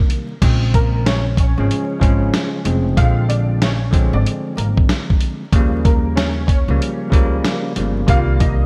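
Boom-bap hip-hop with a moody, reflective air and a swung sixteenth-note feel, cut from a longer piece. A barky, bell-like tine electric piano opens the track with clean, direct accompaniment, its sound filtered and colored by cassette tape. A dusty soul sampler-style drum kit arrives at 0.1 seconds and sits up front, compressed and gritty with vintage 12-bit sampler character, a thumpy kick, a medium-tuned snare, hi-hat, crash cymbal and a gated reverb. A pizzicato upright bass with steel strings and a woody tone enters at 0.4 seconds as the chords move from Bbm9 to Bb9, Eb7 and Cm7. From 0.7 seconds an upright piano carries the melody, clear yet worn and slightly detuned, treated with ensemble chorus, filtering and digital delay. Light reverb and digital ambience give the mix a bright 1980s-style digital production sheen, and vinyl crackle adds a dusty patina throughout.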